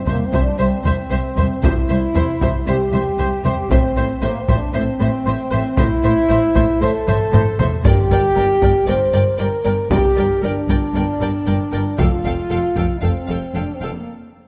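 Driven by a straight 4/4 taiko pulse at 116 BPM, struck with hard sticks and carrying a vintage, band-limited bite, this heroic, dramatic orchestral film-score cut in G dorian puts mellow, distant French horns up front on sustained chords over bowed strings: a focused, lush violin melody, a woody second violin line in the background, expressive viola accompaniment with portamento, and smooth cellos and double basses holding the bass through C, Am, Gm and Fadd9, with a drum fill at 7.1 s, a very quiet timpani G2 at 7.8 s and a brief break at 14.1 s, set in a moderate scoring-stage reverb.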